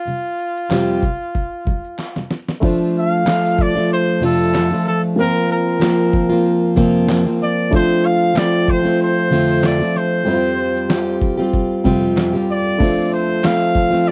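Acoustic pop with an easy-going, sunny swing, heard in a short excerpt where a warm trumpet carries the melody with light vibrato and scooped notes, sounding distant and roomy yet up front, over a picked parlour-style steel-string guitar. A dusty sampler-style drum kit with a thumpy kick, fat snare, shaker and gritty overdrive sits up front, crisp group handclaps ring from a large room in the background, and a drum fill at 2.0 seconds leads in a dark, woody, slightly detuned upright piano at 2.6 seconds, its action noise audible. The dry, close recording has a 1970s studio character, with chords moving between Csus4/F, F6 and Bbsus2/F.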